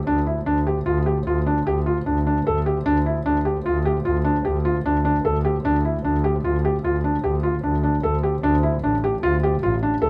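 Urgent yet hypnotic, this contemporary chamber piece moves in an uneven seven-beat metre with a straight feel, cut from a longer work. A felt-muted upright piano carries the arpeggios throughout, its soft, intimate tone thinned by the felt and given a short sustain that keeps each note close and mellow. Beneath it, a single bowed double bass holds the low line with a warm, smooth, even sound and steady vibrato. Both instruments sit up front, captured by close, detailed microphones with light reverb. The harmony rests on a G5 chord over D before shifting to D minor at 8.4 seconds, where a brief new section begins.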